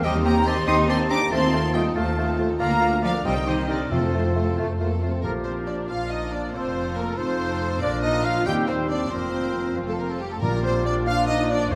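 Urgent and stormy, this fast romantic orchestral passage in 6/8 sets a lush, vibrato-rich violin section on the melody, with a more distant second violin section, a pure-toned silver flute, a roomy oboe and a vintage clarinet weaving supporting lines, while a clear bassoon and focused violas fill the accompaniment and a ringing, fingerpicked harp adds arpeggios. Mellow French horns hold sustained chords over rich cellos and double basses, close, dry timpani strike at 3.9 seconds and again at 10.4 seconds, and a soft-attack trumpet adds stabs from 5.2 seconds, all bathed in a wet scoring-stage reverb.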